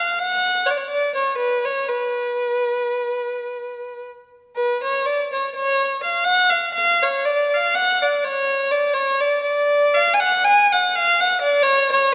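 Unmetered and in free time, this short passage, cut from a longer piece, unfolds as a Balkan folk piece with a restless, bittersweet mood. A single bowed fiddle carries the whole recording alone from 0.0 to 12.1 s, singing in B Dorian with a raised fourth and tuned to A4 = 435 Hz. Its rich tone sits up front, with a light vibrato and an even, smooth top across a range from B4 to G#5. The line moves into a second section at 4.6 s and continues until the end. A moderate reverb of a large scoring stage, with a 2.0 s decay, surrounds the fiddle with a sense of space.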